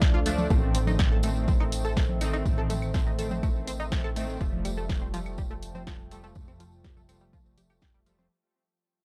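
Hypnotic and cinematic, this melodic techno excerpt is cut from a drop at 123 BPM in a straight 4/4, fading out from 0.5 seconds as the chords move from D minor through A diminished to F add9. An up-front, tape-warm electronic kick and a punchy analog drum machine of claves, congas, hi-hat and snare drive the groove alongside a jingly, close tambourine, while a funky, plucky analog bass pumps beneath tight, detuned sequenced arpeggios and bold, brassy synth stabs, both coloured by chorus and tape echo. A deep, warbling ambient pad holds sustained chords in the background, and the dark, dry production keeps reverb to a minimum.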